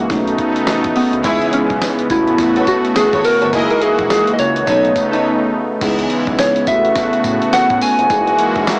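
A round, gentle FM synth lead carries the melody from 1.0 s, its keys-like, decaying notes warbling with chorus and a vintage sheen in this slick, confident new jack swing cut from a longer piece. Beneath it, a brassy, bold analog pad sits up front with detuned sawtooth chords, ring modulation and a filter swell, while a bell-like, clean tine electric piano adds accompaniment further back. A smooth, mellow synth bass with a moving notch holds the low end in the background, and a gritty, compressed sampler-style kit with a thumpy kick, medium-tuned snare, hi-hat, crash and tambourine drives the 105 BPM groove with a 16th-note swing in C# minor. A lush, expressive string section enters at 1.2 s with bowed stabs full of vibrato and portamento, its distant tone trailing through analog delay until 5.2 s, when a brief break leads into the second section. The harmony cycles through B9, C#m7, A69 and F#13, and the whole piece has the small-speaker character of a home cassette recording with moderate booth ambience.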